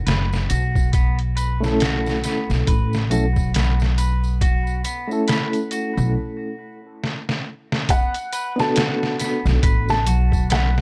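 A woody, pizzicato upright bass sits up front in this cinematic, hypnotic trip hop excerpt in B minor, moving at a slow 69 BPM with a swung sixteenth-note feel alongside a compressed, pitched-down sampler-style drum kit with a thumpy kick and small room ambience, while a tambourine stays in the background. Bright, twangy clean electric guitar arpeggios carry 12-bit sampler grit and tape echo, and from 1.6 s a reedy electric piano adds accompaniment with fast tremolo and tape echo. After a break at 6.2 s and a drum fill, a soft, boxy felt-muted upright piano takes the melody at 7.9 s, its action noise audible within the dry, gritty sound.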